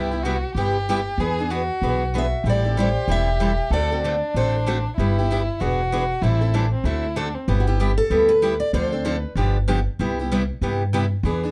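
Acoustic string swing in the jazz manouche style, playful and charming, cut from a longer piece and moving with a swung 4/4 pulse. A woody, growly pizzicato upright bass and a bright picked steel-string guitar with fresh strings and audible finger squeak sit up front in the accompaniment, while a single bowed violin adds an expressive second line with vibrato, soft attack and portamento until 7.5 s. Another picked acoustic guitar, also forward in the mix, carries short melodic phrases from 2.2 s and again from 7.6 s, all set in a dark production with moderate studio ambience.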